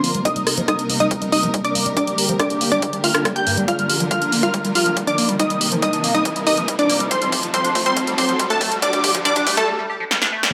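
A lush, detuned sawtooth unison pluck carries the melody in this emotional, euphoric uplifting trance build-up at 140 BPM, with a bright, catchy plucky unison lead above it adding subtle chorus and delay, dark, woody bowed strings holding chords such as Cm7 and Adim, a squelchy, resonant liquid acid bass playing arpeggios through phaser and analog chorus, an up-front, punchy analog drum machine of hi-hat, rim click and snare with fills from 3.7 seconds, a tape-warm electronic kick and a riser in the background, filter sweeps on the pluck, lead and bass, and sidechain pumping on the pitched parts before a break at 9.7 seconds.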